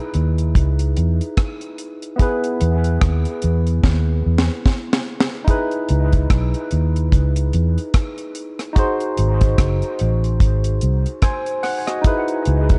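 Longing and smooth, this short cut from a longer lovers rock reggae piece moves at an unhurried 73 BPM in 4/4 with a swung sixteenth-note feel, set in C# minor. A barky tine electric piano carries the accompaniment from the very start, lightly overdriven through a combo amp and touched with subtle chorus and dub echo. From 0.1 seconds a vintage muted fingered electric bass sits up front, its foam-muted tone dark, round and punchy, alongside a deep reggae drum kit that is acoustic and dry, with a high-tuned snare, tight kick, rim click and hi-hat. A drum fill runs from 3.8 to 5.5 seconds, and the harmony moves from C#m7 through E and G#7 before settling back on C#m7. The production is dark and warm, with a studio ambience surrounding the groove.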